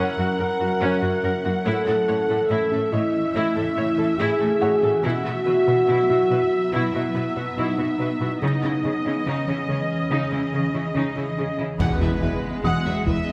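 A straight 4/4 pulse at 71 BPM carries this brooding, relentless cinematic passage in C# minor, a hybrid orchestral and electronic film cue. A close-miked French horn section holds loose, mellow sustained chords over lush bowed viola and cello sections, a cloudy, blurred granular pad, a ringing harp-like synth pluck in arpeggios, and a soft, felt-muted upright piano with tape echo and audible action noise. The harmony moves from F# through A and Bsus4 to C#madd9, then at 11.8 s shifts to Eadd9 as an intense, distant violin melody and a smooth second violin line enter with a double bass section, heavy-stick taiko drums that sound compressed and saturated, and an electronic impact, all set in a moderate scoring-stage reverb.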